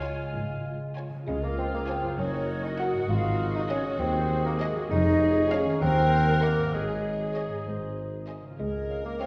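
Opening on a lush, vibrato-rich violin section melody over a second violin line, a pure flute section, mellow clarinet, cor anglais and bassoon, a smooth viola section, French horns holding sustained chords, ringing fingerpicked concert harp arpeggios and a bowed cello and double bass foundation, this playful, whimsical film cue in Db major moves at 66 BPM in 6/8 with a magical, quirky mood, and at 1.3 s a dark, woody marimba joins the melody while a tuba deepens the low end, the whole ensemble heard from further back in a wet scoring-stage reverb.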